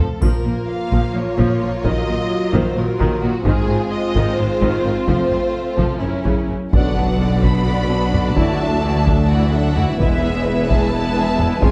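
A dark, roomy recital-hall sound frames this relentless cinematic orchestral cue in Bb minor, driven at 259 BPM in 7/8 by a close, dry taiko ensemble struck with heavy sticks, while a faint triangle sounds only briefly at the start. Lush, vibrato-rich violins carry the melody over a second violin line, an intense viola section, and a background of focused cellos and smooth, distant double basses, with mellow French horns holding chords throughout. At 6.7 s the harmony turns to B minor as very quiet, shadowy trombones, an even, bowed string section and a huge, bright impact join the cue.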